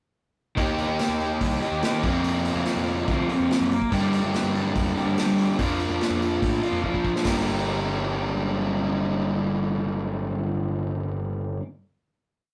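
Indie rock with a moody, cool edge, two overdriven electric guitars ring out chords in a riff, the raw garage guitar sitting up front, while a fuzzy picked electric bass drives a syncopated line beneath them. An acoustic drum kit, distant and roomy with a punchy kick and bundle sticks, lays down a big rock groove through a pre-chorus before a fill at 6.8 seconds hands off to a final G minor chord at 7.3 seconds. The rough rehearsal-room sound carries a warm saturation and moderate studio ambience.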